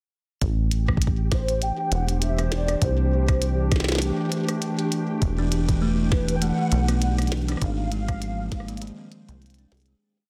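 A deep, rubbery acid bass sits up front from 0.4 seconds, its resonant sawtooth notes plucked by the filter, saturated and dark, gliding long through an intricate, eerie IDM piece at 100 BPM in 4/4 with a light 16th-note swing. Beneath it, a soft overdriven electronic kick follows a broken pattern, while a glitchy kit of tiny snare, rim clicks and clicky closed hats shifts constantly, colored by overdrive, studio reverb and tape echo. A warbling, lo-fi pad of detuned square and triangle tones with ring modulation moves slowly through Am7, C, Em7 and G#6, pumping against the beat under chorus and its own reverb, as a faint, flickering granular texture holds a single high note in the background. Above, a nostalgic, vintage-tinged lead of detuned triangle and sawtooth plays short call-phrase motifs with vibrato, tremolo, ensemble chorus, 12-bit grit and digital delay. From 5.4 seconds a buzzing, woody kalimba adds a dry, close-miked 14-step loop that drifts against the bar, treated with sampler grit and tape echo, before the whole piece fades out from 6.8 seconds under a dense, heavily limited master with light reverb.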